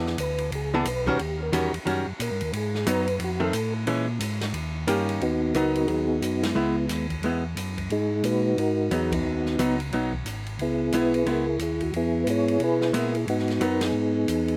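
A late-night, soulful soul jazz organ trio fragment opens on a round, dark tonewheel organ bass with slow rotary swirl and chorus vibrato, beside a clean, compressed hollow-body archtop guitar accompanying up front with slapback echo, while a flute-like, percussive tonewheel organ lead with second-harmonic percussion solos through the first 5.2 seconds, an acoustic kit with dark cymbals, a medium-tuned snare and a boomy kick swings quietly beneath, and the band hits accents at 6.4 and 9.1 seconds in a dry, outdoor sound.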